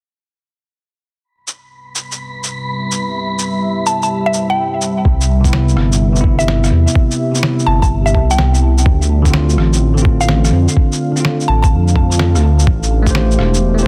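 A dense, heavily limited modern mix carries this wistful, melancholic future garage fragment with a swung 16th feel, where a deep, moody ambient pad with chorus and reverb and an airy, breathy wind-like noise texture open beside a muffled, overdriven shaker, fat snare and rim click, a woody, round mallet-like synth pluck with tape echo carries the melody, and at 5.1 s a menacing detuned saw bass with a filter swell and sidechain pumping arrives alongside a thumpy, up-front kick drum, joined by a bell-like tine electric piano with analog delay over Cmaj7, Dm7 and Am7 chords.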